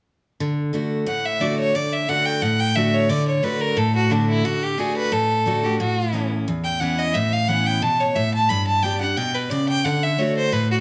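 Virtuosic and rustic, this excerpt of bluegrass moves at a brisk 178 BPM in D major with a light swing on the eighth notes, passing from D through Aadd9 and G back to D. A bright, full-bodied picked dreadnought guitar starts the accompaniment at 0.4 seconds, and a clear, earthy bowed fiddle enters at 1.1 seconds to carry the melody with light vibrato. Both sit up front, the fiddle close, inside the wet ambience of a large studio reverb.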